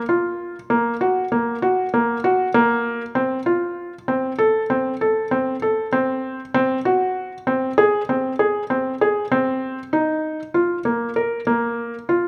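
Contemporary instrumental music for a felt-muted upright piano, playing solo in an urgent yet hypnotic mood with a straight feel in an odd 11/8 metre. This excerpt is cut from a longer piece, and the piano sounds from 0.1 to 12.3 seconds, staying within a compact middle range. Its tone is soft and mellow, with a thin layer of felt dulling each note so that it dies away quickly. The instrument sits up front and intimate, close enough that the mechanical noise of its action can be heard alongside the notes. A moderate recital-hall reverb gives the sound some air, and the music shifts into a new section at 9.9 seconds before the excerpt ends.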